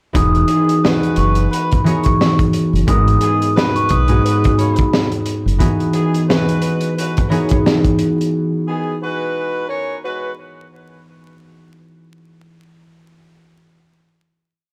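Thumb-plucked concert harp chords, chopped and looped like a sample, ring up front through this dark, gritty boom-bap hip-hop piece at 88 BPM in G# minor, swung on the sixteenths over Emaj9 and G#m7, joined by a round, deep dub fingered electric bass line that stops at 5.6 seconds, a crunchy, saturated breakbeat kit with punchy kick, high-tuned snare and sixteenth-note hats that plays until 8.3 seconds, a short, mellow soft-mallet vibraphone melody with analog delay, and distant, roomy horn-section stabs with light vibrato and their own analog delay, the whole recording set in light reverb with vinyl crackle and a dry hardware character.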